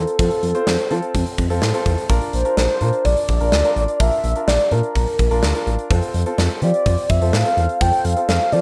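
This nostalgic, wistful synth-pop fragment opens with a mellow, horn-like synth lead carrying the melody, backed by a baby grand piano and a smooth, gliding synth bass, with a gated 80s drum kit of kick, snare and hi-hat joining at 0.1 seconds. Set in F major at a steady, straight 126 BPM in 4/4, the harmony moves from F to Bb at 2.1 seconds and returns to F at 5.9 seconds. The round, vintage lead sings with a soft attack and warbling vibrato, thickened by chorus and an analog delay, while the present, polished piano fills in the middle register beneath it. Up front, the dark bass blends sawtooth and square-wave tones with portamento slides, and the drums bring a bright, airy gated-room snap with a tight kick and medium-tuned snare. Light studio reverb surrounds the parts in a rough home-demo mix, and the piece is cut from a longer work.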